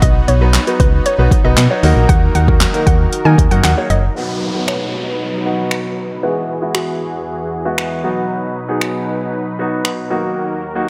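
A euphoric, summery dance-pop drop in B major at 116 BPM opens with an up-front, overdriven deep house kit of deep kick, punchy snare, snaps, claps and hi-hat, a round, dark FM bass, and a hollow, bouncy square pluck melody with chorus and tape echo, while bright grand piano accompaniment and a smooth, detuned supersaw pulse under sidechain pumping. At 4.2 s the bass and lead have dropped out as a downlifter and a filter sweep arrive, and a woody, mallet-like FM pluck with phaser and tape echo sits in the background as the chords move through Eadd9. The dreamy mix is soaked in plate reverb, and the drums stop at 10.0 s, leaving piano and supersaw to close this cut from a longer piece.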